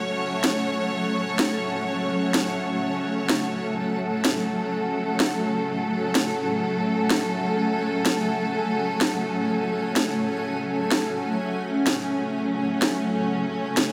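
Bass house with a gritty, bouncy mood and a swung sixteenth-note feel, this short passage is cut from a longer piece. A rich symphonic string section holds sustained bowed chords throughout, its ensemble tone smooth and lush with vibrato, placed up front. Beside it a granular cloud pad supplies texture, a blurred, evolving haze of detuned sine tones with slow attack, long release and its own built-in reverb. An electronic snare drum enters at 0.4 seconds, a layered, cracking hit that sits up front. A moderate hall reverb with a 2.0-second decay gives the passage its spacious setting.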